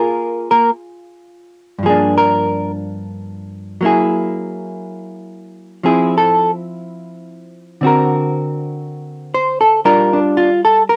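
Jazz ballad excerpt with a tender, romantic mood and a gentle swing, where a dark, clean, picked hollow-body electric jazz guitar plays alone and up front, moving through chords like a rootless Gbmaj9, Gm7 and Daug7, its tone colored by cassette tape and set in a modest booth ambience that gives the home recording an intimate feel.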